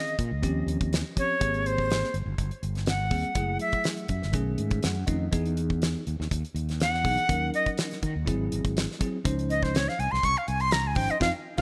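A breathy, reedy jazz flute with vibrato and tongued phrasing leads this slick, funky slice of electric jazz fusion, its solo line carried up front on a touch of delay. It drops out at 3.8 seconds, leaving a short gap where the clean, bell-like tine electric piano slips in a brief fill, then returns at 6.8 seconds. Beneath it, the electric piano comps through lush extended chords such as Eb13, Abmaj9 and Dbmaj9. The damped 70s drum kit sounds dry and polished, with a fat snare, tight kick, hi-hat and a rolled-off top, while the growly, amped fretless bass sits up front beside it. The band lands a closing accent at 11.2 seconds, all set in a small room with light reverb and a bright 1980s-style digital sheen.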